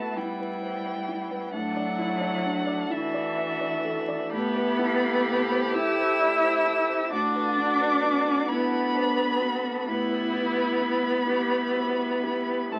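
A slow, rubato 6/8 lilt at 43 dotted-quarter beats per minute sets the pace for this reflective, longing neoclassical piece for piano and strings, cut from a longer work. A single bowed violin, up front and focused with a smooth top and vibrato, carries the melody between E5 and E6, while a lone cello beneath it sings a second line between E3 and E4, expressive and warm, sliding with portamento. A felt-muted upright piano gives soft, dark, intimate accompaniment, its thick felt and audible action noise part of the sound. In the background, a rich bowed viola with vibrato adds further accompaniment while a reedy, breathing pedal harmonium holds sustained chords, and all five parts play together throughout the 12.8 seconds. The harmony moves from Em/A through Dadd9/A, Amadd9 and Bm/A before returning to Em/A, everything resting on A. The sound sits in a wet small room and carries the crackle of a very old 78 rpm record.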